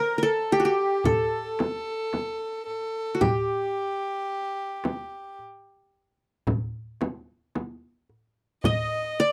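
Arabic maqam ensemble music in 10/8, longing and melancholic, is led by an up-front qanun whose plectrum-plucked triple strings ring bright-edged, while a single rich, floating bowed violin plays a quieter second line with soft, pure sul tasto tone. A crisp metal-shell darbuka played with soft hands enters at 1.0 s, joined at 1.1 s by a deep, large frame drum set in a small room, and both drop out at 8.9 s. This short cut from a longer piece has a dry, close, 1970s-style studio sound.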